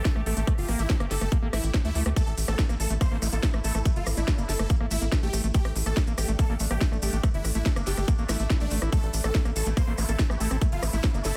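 An alien, hypnotic stretch of psychedelic trance opens at once with a huge, detuned supersaw melody pumping against the beat through phaser and dub echo, while a bubbling, resonant texture of stepped-filter chords sits bright and chorused in the background. Almost immediately a tight, up-front electronic kick arrives with a layered kit of cracking snare, crisp hats and rim clicks, lightly tape-toned and set in a small room. Underneath, a dark, punchy sequencer bass drives with a plucked filter, and a squelchy, gritty acid bass riff rides above it, distorted and delayed. From 2.2 seconds grainy, distant maracas add a faint acoustic shimmer, and at 2.5 seconds a nasal, wobbling vowel-sweep bass slips in far back, returning again at 9.2 seconds through chorus and echo. The mix is dense and heavily limited, dry overall, and the passage is cut from a longer piece.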